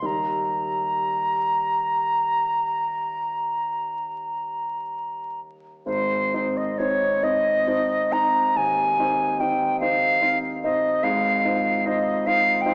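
Romantic classical music for flute and grand piano, this serene, tender passage cut from a longer piece moves in a gently flowing 12/8 with free, breathing rubato, shifting into a new section at 5.9 s. The silver concert flute sings the melody up front with an airy, straight tone and crisp attack, while the grand piano accompanies in an intimate manner, its deep bass and long sustain carrying audible action noise. A moderate stage reverb surrounds the duo, and vinyl crackle and a small-speaker sound color the recording.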